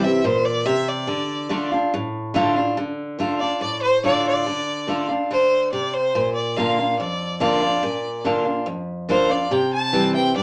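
A clear, focused bowed fiddle with light vibrato and a picked dreadnought steel-string acoustic guitar play together in this brooding, lonesome country excerpt at 143 BPM in D minor, both up front in a small, reverberant room, with the fiddle carrying the melody over the guitar's accompaniment before stepping into a solo at 2.8 seconds.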